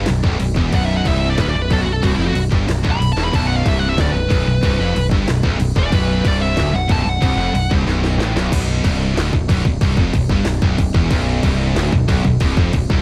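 A driving, straight 4/4 pulse anchors this dark, aggressive heavy metal cut from a longer piece, where three bright, picked high-gain rhythm guitars, one scooped and one double-tracked (that one dropping out from 8.5 to 11.1 seconds), churn a low riff in the background over a growling, overdriven bass and a tight-kicked, cracking-snare garage drum kit re-recorded in a large room, while a dark, delayed lead guitar solos high above from 0.8 to 7.7 seconds before a drum fill ushers in a new section at 8.5 seconds, all in a dry, shadowy production.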